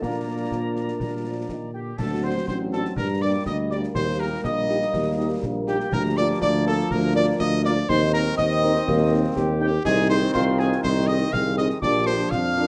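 A proud, festive military-style march for wind band in 2/4, cut from a longer piece, opens with a bright cornet carrying the melody above an airy, vibrato-tinged piccolo and a distant woodwind section on second lines, a smooth-topped French horn section and sustained trombone chords behind them, a mellow tuba bass up front, and a close, dry concert snare drum, bass drum and dark-toned clash cymbals, with a punchy euphonium joining the second lines at 0.5 s, the band set in a moderately reverberant large studio.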